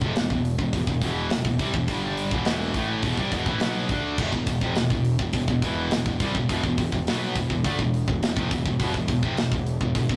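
A tight, up-front metal drum kit with a mid-forward, medium-tuned snare and rolled-off top drives this aggressive, relentless heavy metal excerpt at 104 BPM in E minor, as two high-gain distorted guitars (one of them scooped) churn out a riff in the background alongside a very quiet, double-tracked overdriven guitar and a dark, round fuzz bass, all sitting in a rough rehearsal-room sound with moderate stone-room reverb over a single Em chord.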